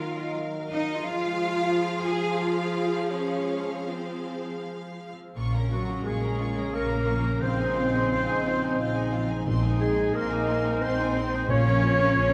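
Bittersweet and longing, this cinematic orchestral film-score cue in Bb minor drifts in a rubato 3/4 at around 79-92 BPM, as a rich, smooth, vibrato-laden violin melody floats over a lush second violin line, distant viola accompaniment, dark roomy French horn chords, ringing harp arpeggios and an intense cello bass, before double basses join at 5.4 s, mellow clarinet, pure flute ensemble and oboe add a second line at 5.7 s, and soft round timpani enter at 7.4 s, all within a wet scoring-stage reverb.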